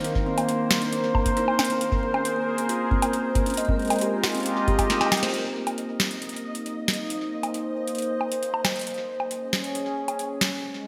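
A booming, tape-warm analog drum machine with crisp snare, metallic hats and bongos drives this straight 4/4 IDM cut at 136 BPM, joined by a deep electronic kick up front until 4.9 s, when a drum fill and band accent lead into a new section at 5.3 s. A smooth, warbling detuned pad carries sustained chords from Cm7 through Bb7sus2 and Fm9 to Bbm9 in C phrygian, and a woody, hollow kalimba rings out delayed arpeggios until 5.3 s, after which the pad takes a filter sweep. A bubbling, resonant texture of random filter steps sits in the background, and the glitchy, cerebral mood is set in a lush hall reverb with bright 1980s-style digital production, ending on a break at 10.6 s.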